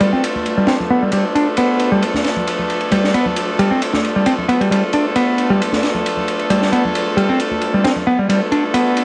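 Breakbeat with a funky, swaggering feel at 134 BPM in 4/4, with a light swing on the sixteenths, sitting on a G7 chord. A growly, up-front picked electric bass carries the riff through a low-pass filter and analog delay, while a bright horn section with light vibrato and octave doubling punches out jazz-style stabs, both colored by cassette tape and delay. A crunchy, saturated breakbeat kit with a high-tuned snare and dark ride cymbal plays in a small room, and close, bright congas sit in the background from 0.4 to 8.0 seconds, all within a lo-fi home-cassette sound with a rolled-off top and moderate studio reverb.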